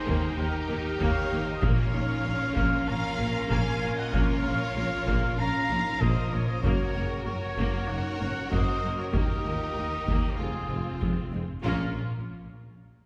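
Cinematic, epic orchestral film score in Bb minor at 96 BPM, dark and dramatic, where lush, expressive violins carry the melody and a second line over rich violas and a very quiet cello section, with the distant double basses and a mellow tuba in the background, trumpet stabs on top, dark, punchy horn chords sitting far back, and heavy-stick taiko drums, all heard from further back in a reverberant scoring stage in this excerpt cut from a longer piece.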